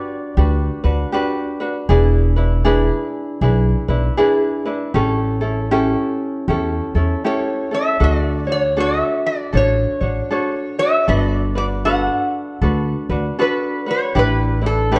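Dreamy and relaxed, this short Hawaiian excerpt drifts along at an easy swing in four, tuned a little below standard pitch. A fingerpicked ukulele carries the accompaniment throughout, its light tone sitting up front. An upright bass enters at 0.4 seconds, plucked on steel strings with a woody, thumpy voice that grounds the lush seventh and ninth chords. The metal-body resonator slide guitar is heard only briefly at the very start, then returns at 7.3 seconds to take the melody, its fingerpicked slide lines nasal and metallic. A moderate recital-hall reverb surrounds the parts in a dark, warm production.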